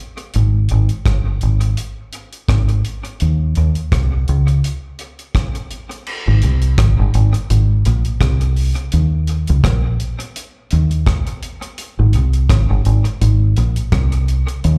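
A deep reggae drum kit with dry, dark cymbals and a tight kick opens this smooth, tender lovers rock excerpt in Ab major at 84 BPM, its rim clicks and hi-hat in a kit that carries dub echo, before a round, punchy, foam-muted fingered electric bass enters up front at 0.4 seconds, all heard as a live gig through the venue's PA with club reverb.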